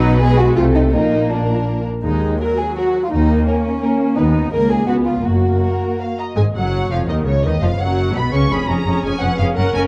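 A quick 3/4 pulse at 168 BPM, pushed and pulled with rubato, drives this urgent, stormy classical-period movement for string orchestra, cut from a longer piece, which opens in Eb minor and turns to F# major at 4.2 s. A focused violin section carries the melody with vibrato and a smooth top, while a second violin section plays its own line sul tasto, soft in attack, intimate and up front. Distant violas give a rich, even accompaniment, and distant cellos and double basses share an expressive bass, all in moderate recital hall reverb with a dark, warm production.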